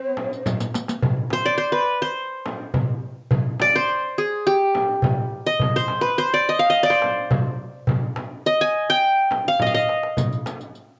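Arabic maqam ensemble music in C maqam nahawand at 105 BPM, hypnotic and soulful, cut from a longer piece, with a bright-edged, fingerpicked qanun carrying the melody up front through its cassette-tape color from the start to 10.7 seconds. A breathy, mellow ney and a dark bowed cello in the background sound only a brief note in the first half second, while clay-shelled darbuka and a small, distant frame drum keep the pulse from 0.2 seconds, and a riq with bright jingles appears briefly at the opening and again near 10.2 seconds. Drum fills mark the turn into the longer second section at 1.0 seconds and recur near its end, all captured as a home cassette recording with moderate studio reverb.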